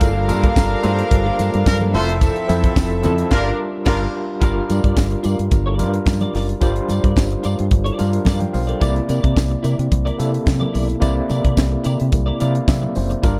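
A tight funk drum kit sits up front with a high-tuned snare and a tight kick, driving this glamorous disco excerpt in G dorian at 109 BPM alongside a round, punchy dub bass. A barky, gritty electric piano with fast tremolo and a clean, compressed picked guitar with ensemble chorus carry the chords from Gm9 to Fmaj7 and Gm7 and later C9, while soft congas and a jingly tambourine sit in the background. Floating bowed strings with tape echo play through the opening until about 4 seconds, joined at 1.7 seconds by distant pop horn stabs, and this passage ends with a band accent. The electric piano plays a fill at 12.1 seconds within a small room and a dark, warm production.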